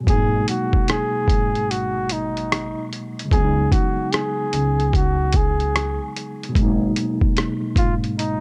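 A mellow tine electric piano opens this nostalgic, melancholic lo-fi hip hop excerpt in G# minor at 74 BPM, its cassette-tinged, filtered chords moving from G#m9 to C#7sus4 and back. From 0.1 seconds a breathy, whispered flugelhorn carries an intimate jazz melody up front with a soft attack, vibrato and analog delay, over a woody, growly pizzicato upright bass and a compressed, pitched-down sampler-style kit with a thumpy kick, hi-hat and rim click on a swung 16th-note feel. The sound is dry and gritty, like a hardware recording with little reverb.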